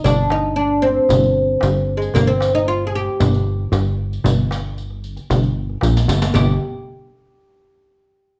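Heard in a moderately reverberant large studio where the band plays live together, this brief Arabic maqam ensemble piece in G maqam kurd moves at a steady 114 BPM in 4/4, with a melancholic, hypnotic mood. An up-front, woody plectrum-plucked oud with double strings carries the melody over a punchy, saturated analog bass whose fast-attack filter pluck gives it a funky edge. A soft-handed clay-shell darbuka sits in the background, joined by a riq with bright jingles, and a drum fill arrives at 5.8 s.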